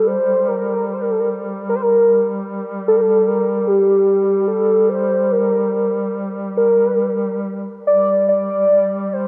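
Longing and mournful, this short Caucasian folk lament unfolds in a free, rubato 3/4 over a dark, cathedral-like reverb. A velvety synth lead sits up front carrying the melody, its smooth, sustained tone shimmering with chorus and vibrato. Behind it, a mellow duduk holds a low drone from 0.0 to 9.3 seconds, sounding distant and roomy with vibrato and scooped notes.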